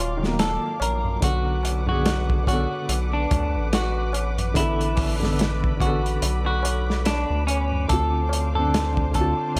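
Trip hop at 72 BPM with a 16th-note swing, this hypnotic, smoky excerpt sets a clean, dark semi-hollow electric guitar melody with warbly pitch drift and tape echo over a soft, felt-muted upright piano carrying tremolo, 12-bit sampler grit and its own tape echo, while veiled, con sordino strings hold sustained chords. A round, nasal analog bass with a filter pluck and fast attack sits up front, and at 0.2 seconds a crunchy, saturated breakbeat kit with a tight kick and rolled-off top enters alongside a low-tuned, ringing tabla. The harmony moves from Ebmadd9 to Bm7 at 1.2 seconds and Dm7 at 7.9 seconds, all within an intimate small-room ambience.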